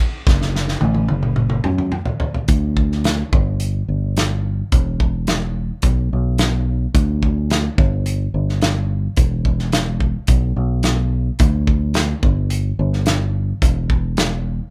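A loose, mid-forward acoustic drum kit opens this hopeful, nostalgic folk rock and heartland rock excerpt at 108 BPM in a straight 4/4, starting with a fill from 0.3 to 2.5 seconds, its medium-tuned snare and punchy kick sitting up front. A fingered electric bass, dark and round with a direct, amped tone, holds the low end from E1 to F#2 alongside it. The pair sound like a band playing live together in a small room with a moderate touch of reverb.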